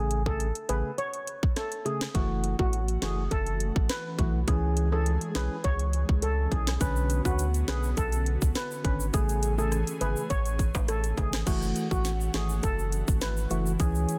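A dense, heavily limited and nearly dry mix carries this tough, sultry dancehall excerpt at 103 BPM in F# minor: overdriven electronic drums with a tight kick, sharp snare and metallic hats sit up front beside a thick, saturated sub bass; a hollow, percussive organ stab with chorus plays chords moving from Amaj7 through F#m7, C#m and Bmadd9; a mellow steel pan carries the melody through delay; an airy, breathy pad with sidechain pumping enters in the background at 2.1 seconds; and ringing egg shaker and timbales join at 6.8 seconds.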